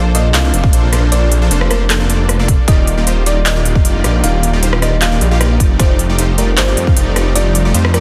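A dense, heavily limited modern master with little reverb carries this bright, euphoric future bass excerpt at 154 BPM in a half-time feel in Bb major, where a thick detuned saw bass and a punchy supersaw stab riff pump under sidechain, a round, tine-like thumb-piano-style pluck melody with chorus and tape echo sits in the background, a very quiet string section holds rich sustained chords, an overdriven big-room kit adds crisp hats, handclaps and rim clicks, and an up-front electronic kick enters at 0.6 s and stops at 6.9 s, all over a Bbmaj9, Ebmaj9 and F13 progression.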